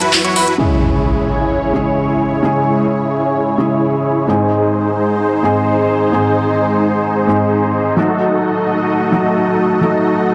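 Festival progressive house in C# minor at 130 BPM, powerful and emotional, where a huge, euphoric detuned supersaw lead riff with dub echo rides over a lush, thick chorus-and-phaser pad of sustained chords, a brief boxy grand piano arpeggio and house kit with metallic hats and handclaps open the first moments, and at 0.6 s an electronic impact lands as a soft, felt-muted upright piano with audible action noise takes up an intimate accompaniment through C#m, G# and D#dim in a dense, heavily limited mix with light reverb.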